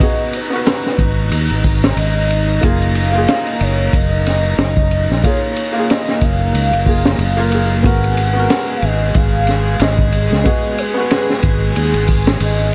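A crunchy, saturated breakbeat kit with a punchy kick, high-tuned snare and dark cymbals sits up front in this melancholic, brooding trip hop excerpt at 92 BPM in G# dorian, swung on the sixteenths, joined at 1.0 s by a growly, bright fingered electric bass. A felt-muted upright piano with harmonic tremolo plays intimate, mellow accompaniment while a clear studio string section floats sustained bowed chords over the G#m7 and F#maj7 changes. Above them, a pure, breathy sine lead with vibrato and portamento glides through the melody, coloured by analog chorus and tape echo, all set in a small room with a bed of vinyl crackle.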